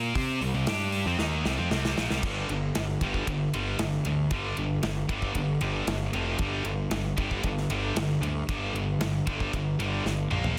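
Hard rock with an anthemic, swaggering attitude, this short cut from a longer piece moves in a straight four-four feel. A scooped, high-gain electric guitar, bright and double-tracked, sits up front carrying the riff from the first moment, its distortion giving the part a biting edge. Beside it, a fuzz-toned picked electric bass, overdriven and warm, also up front, holds down the low end. The big acoustic drum kit comes in at 0.2 seconds with a punchy kick, medium-tuned snare, hi-hat, ride, crash and toms, and a fill at 1.2 seconds carries the opening into the main section at 2.2 seconds, where the harmony moves through power chords on G, F and Bb. Light reverb and a small-room ambience surround the band, and the dense, heavily limited modern master keeps the sound tight and loud, with a final drum fill closing the clip at 10.1 seconds.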